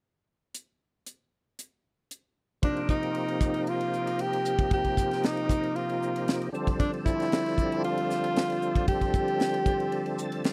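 Electric jazz fusion at 115 BPM in a straight 4/4 with a driving, nocturnal mood, cut from a longer piece. A crisp acoustic drum kit with airy cymbals, a high-tuned snare and a punchy kick opens alone at 0.5 s. At 2.6 s a breathy alto saxophone enters as the solo voice, using subtone, vibrato and scooped notes. Alongside it comes a thick, lightly overdriven tonewheel organ with key click, third harmonic percussion, chorus vibrato and a slow rotary speaker, playing over F9sus4 and then Csus24. The organ adds a short fill at 9.9 s, all captured in a dry, close 1970s-style studio sound.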